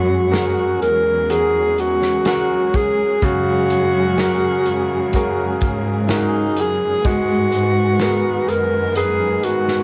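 An alto saxophone with a warm subtone and jazz-style vibrato sings a longing, heartbroken melody up front in this slow 63 BPM pop ballad excerpt, over a bright, woody upright piano with audible action noise, a dark sul tasto string section in the background and a rich, expressive cello section on the bass, while a loose indie drum kit with a tight kick joins at 0.3 seconds, the piano, strings and drums carrying a cassette-tape tint as the harmony moves from F#add9 to G#madd9 at 7.0 seconds.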